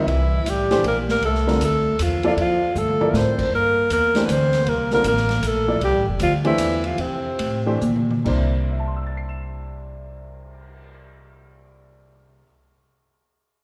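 A swung 3/4 lilt at 133-157 BPM drives this hypnotic, searching modal jazz in C mixolydian, cut from a longer piece and heard in a reverberant concert hall. Up front, a breathy alto saxophone with subtone and vibrato carries the melody, while a distant, growling trombone with scooped notes plays a second line; both stop at 7.8 s as the tempo slows. A warm baby grand piano accompanies, a woody pizzicato upright bass sits forward, and a vintage drum kit with dark cymbals and a punchy kick adds short fills, with the piano sounding last, until 12.7 s.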